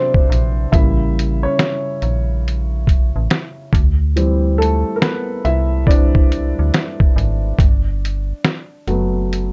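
Reflective and hazy, this lo-fi hip hop excerpt moves at a relaxed 70 BPM with a swung 16th-note feel, led by a dark, mellow upright piano with a woody tone and a cassette-tape, low-pass coloring that drifts through chords from Am69 and A7b9 to D7sus4 and Gmaj9. A muffled, pitched-down, compressed sampler-style drum kit enters at 0.1 seconds with a thumpy kick, a medium-tuned snare and hi-hat. At 0.3 seconds a metallic, digital FM bass joins with fast-attack, decaying notes, all sitting up front in a dark production with light reverb.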